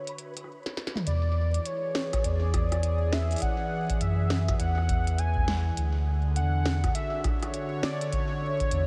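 Glitchy and wistful, this IDM excerpt at 102 BPM with swung 16ths opens on a chorused, wave-folded analog pad with a filter sweep, a brief grainy, flickering texture in the background, and a clicky glitchy drum kit with delay and a tiny snare playing a fill, before a velvety synth lead with vibrato, 12-bit grit and tape echo and a round, up-front sub bass enter at 1.1 s, joined by a deep, tape-warm electronic kick at 2.1 s, over chords moving from Dmaj7 to E7 and back to Dmaj7 in light digital ambience.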